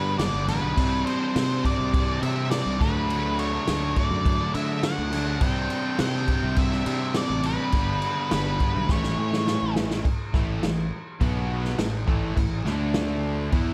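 A dark octave-fuzz lead guitar carries the melody until 9.7 seconds over a sunny, confident classic rock groove in straight 4/4, cut from a longer piece. Beneath it, three overdriven picked guitars play riffs, one biting and very quiet, one bright and one double-tracked, both set back in the mix, while a round, fuzzy fingered bass moves through G, Csus2, D and A. An up-front vintage kit with a punchy kick, medium-tuned snare and dark crash cymbals plays a fill from 8.9 seconds into a closing passage of A5, B5 and D5 power chords at 10.1 seconds, all in a small room ambience.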